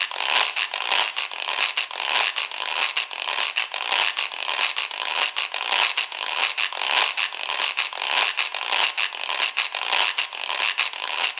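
A raspy, acoustic guiro sits close and up front in this driving, passionate Latin excerpt, playing in a straight 4/4 from 0.1 to 11.4 seconds in a rough home demo mix with light reverb.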